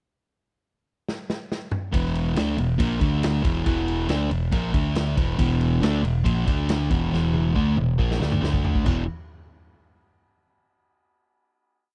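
A raw garage drum kit opens with a fill at 1.1 seconds, its saturated, dark sound and punchy kick setting up a swaggering, gritty blues rock and southern rock groove at 139 BPM in straight 4/4. At 1.9 seconds a double-tracked fuzz guitar riff of compressed power chords moves between E5 and D5, with a bright, growly fingered bass doubling it in a syncopated line. After another drum fill from 7.1 seconds, the trio lands on a final E5 chord at 8.9 seconds, all captured in a dry, close 1970s-style studio sound.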